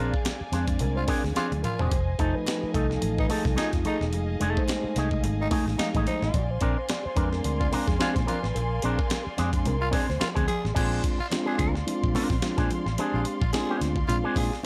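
A funk groove opens straight away with organ, strings, envelope-filtered guitar and bass, and the breakbeat kit and congas join within the first fraction of a second. The mellow tonewheel organ takes the lead for the first 10.8 seconds, its flute-like stabs carrying chorus vibrato and key click through a stopped rotary speaker. Beneath it, a round, foam-muted vintage bass and a compressed, up-front breakbeat kit with a thumpy kick and gritty grain drive the swung sixteenths, with a drum fill at 1.4 seconds. The twangy, clean picked guitar accompanies through its envelope filter, while very quiet, ringing congas and a dark, woody string section bowing sul tasto chords sit further back. A raspy, growling tenor saxophone adds a second line from 1.0 seconds, and the energetic, funky passage moves through rich extended chords in light digital ambience before it is cut off from a longer piece.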